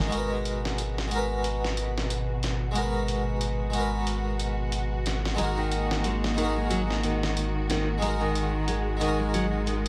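A plucked, Flemish-style harpsichord sits up front in this dark, hypnotic trip hop excerpt, its full, double-strung tone colored by tremolo and tape echo as it carries the accompaniment. Beneath it, a round analog bass holds a deep, sustained low note with a fast attack, mixed just as close. A lush studio string section bowed with vibrato fills in smooth sustained chords, roughened by vintage 12-bit sampler grit. A dusty soul sampler-style kit of hi-hat and fat snare swings its 16ths over a 4/4 groove; it sounds compressed and thinned by high-pass filtering, and it was re-recorded in a large room. At 5.4 seconds the harmony shifts from G#m9 to D#m/G#, and a fingerpicked nylon-string guitar enters with deep classical arpeggios carried by tape echo. Vinyl crackle, light reverb and small room ambience wrap the whole track in an aged haze.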